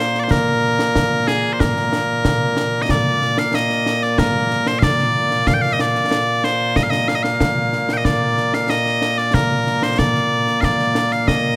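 Loud, bright bagpipes lead this stirring, ceremonial piece of Scottish traditional pipe music, carrying the melody from the first moment to the end at 11.6 seconds. Their piercing, continuous tone sits up front as the solo voice, ranging from Bb2 up to G5. A concert snare drum and concert bass drum join at 0.1 seconds as the drum part, acoustic and closely heard, with bright cymbals adding shimmer beneath the pipes. The music moves in a straight 4/4 feel, shifting into a new section at 2.9 seconds. Close, detailed microphones and light reverb give the recording a vivid presence, and this brief passage is cut from a longer piece.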